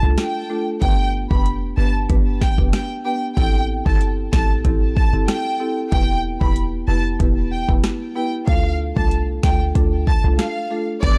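A lush, vibrato-rich violin section carries the melody through tape echo over a tough, hypnotic 94 BPM dancehall groove, with a woody marimba, a punchy short 808-style bass and an electronic afro-pop kit of deep kick, sharp snare, rim click and metallic hi-hats cycling through Dm, G, Am7 and Em in a dark, warm mix with small room reverb, in an 11.2-second excerpt from a longer piece.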